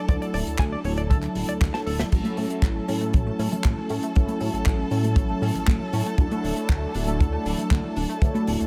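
Sunny and groovy, this nu-disco excerpt moves at 118 BPM in A major, with an up-front, tight acoustic kick and a dry, polished funk kit of medium-tuned snare, hi-hat, handclaps and crash driving a straight 4/4 under a retro, glossy synth bass and round, brassy synth brass. A bright, twangy clean electric guitar riff opens the cut before a drum fill at 1.6 seconds, and at 2.1 seconds a nasal analog pluck with phaser, dub echo and sidechain pumping joins soft, vintage cabasa and congas in the background. Above it all, a clear, close violin section holds pumping sustained chords with vibrato over a Dadd9 to A6 progression, all in a small room with light reverb.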